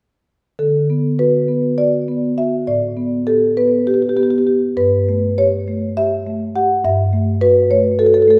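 A lush recital-hall reverb surrounds this flowing fragment of a contemporary classical piece for solo marimba, whose woody, mellow, round rosewood tones under soft mallets drift freely in a rubato 7/8 from 0.6 to 8.4 seconds, ranging from G2 to F#5 across D6, A9sus4 and Gadd9 harmonies.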